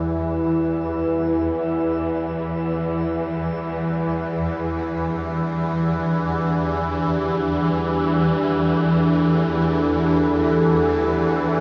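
Floating in free time, this dark ambient drone in E minor hangs on a single Em7 chord for its 11.6 seconds, a cavernous, desolate fragment cut from a longer piece. A deep, moody pad built from detuned sawtooth, sine and triangle voices with a sub octave holds sustained chords between E3 and B4, its slow attack and long release softened by chorus and a shimmer reverb that halos its dark tone. Beneath and around it, a swarming drone between E2 and E3 sits up front, tense and evolving, its bright, granular grain fading in over the whole span. A quartz singing bowl, played with a suede striker and close-miked, rings pure and dry with a slow beating, though it stays barely audible. Everything floats in a huge, wet ambient space with an 8.4-second decay, giving the fragment the feel of a vast, empty chamber.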